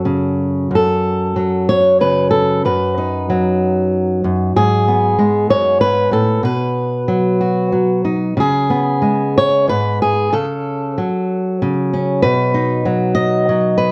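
A fingerpicked steel-string acoustic guitar carries this short folk fragment alone, its dark, up-front tone marked by the occasional finger squeak and a slapback echo trailing each note. The mood is haunting and reflective, moving in a rubato 6/8 at around 63 BPM in F# dorian, with the guitar ranging from F#2 up to D#5. The harmony drifts from F#m through B/F#, G#m7 and B, then to a C#5 at 8.4 seconds and F#m/C# before settling back on B at 12.2 seconds. Light reverb surrounds the playing, and the whole recording carries the character of a worn, old cassette tape, with a warbly pitch drift that lends it a faded, memory-like quality. Cut from a longer piece, the passage runs to 13.9 seconds.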